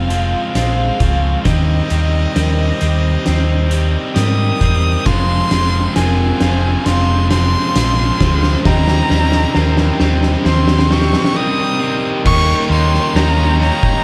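A melancholic, cinematic post-rock passage in F minor at 67 BPM opens with a bowed violin melody full of vibrato and portamento over very quiet reedy harmonium chords, a twangy twelve-string electric guitar arpeggio, a ringing vibraphone with analog delay, an overdriven stack-guitar riff, an up-front round bass and a boomy, gritty low-tuned drum kit whose fill runs through a build-up, joined at 5.1 s by a background distorted guitar riff before a brief break at 11.4 s and an Eb7 chord at 12.3 s, all in a dark small-room production cut from a longer piece.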